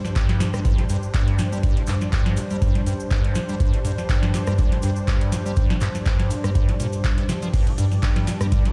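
A big, reverberant sound like a big sound system in a bare room frames this gritty, hypnotic acid house excerpt at 122 BPM with a light 16th-note swing, where an up-front deep electronic kick anchors a booming analog drum machine of tonal snare, handclaps, metallic hats, rim click, toms and crash, a squelchy, hollow square-wave acid bass riff with resonant filter plucks, chorus and delay pumps against the kick, a smooth, detuned sawtooth pad holds a G5 chord with chorus and vintage 12-bit sampler grit, and a grainy, bright cabasa sits close in the background.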